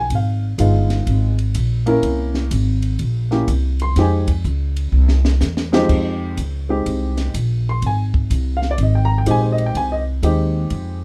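A woody, up-front pizzicato upright bass anchors this moody, cool small-group swing and bop jazz in F minor at 124 BPM, moving through Db7, C7b9 and Fm7 beside an intimate baby grand piano that comps with short sustain and audible action noise, while a compact cocktail drum kit with a high-tuned snare, punchy kick and rolled-off top plays a fill from 4.9 to 5.9 seconds in a lightly reverberant space.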